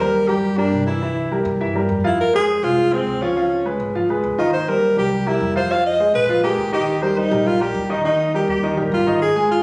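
A breathy, whispered alto saxophone carries the melody up front, with scooped notes, vibrato and a plate reverb, in this sophisticated, lively jazz excerpt at 205 BPM in Eb major. A smooth, vintage grand piano accompanies it, while a woody, dark pizzicato upright bass sits lower in the mix, moving through changes such as Ebmaj7, C7, Fm and Db9. The sound is that of a phone recording in the room, with club reverb and compression, and the passage is cut from a longer piece.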